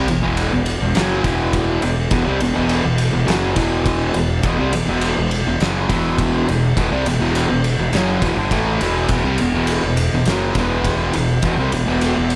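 A straight 4/4 pulse drives this heavy, brooding stoner and doom metal passage, cut from a longer piece. A double-tracked, compressed fuzz guitar sits up front, picking a low, distorted riff built on an E5 chord, its tone bright. Beneath it, a fingered electric bass plays in its lowest register with a growly, overdriven fuzz, sounding both direct and amped. An oversized, low-tuned acoustic drum kit joins at 0.1 s, also placed up front, with a punchy kick, a fat snare, and dark crash and ride cymbals ringing in a bright, pumping stone room. A light studio reverb surrounds the whole mix through to the close at 12.4 s.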